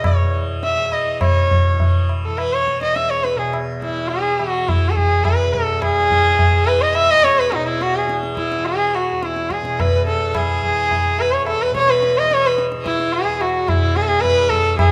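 Radiant and serene, this Hindustani classical excerpt in raga bilaval is cut from a longer piece and gradually speeds up over its 14.9 seconds. A rich, nasal, earthy sarangi carries the melody up front, its bowed line gliding with portamento and light vibrato, a smooth top and the ring of sympathetic strings. Beneath it a softly plucked tanpura offers a buzzing, shimmering drone, while a low-tuned tabla with a short ring sits close and dry, all placed in a moderate recital hall reverb.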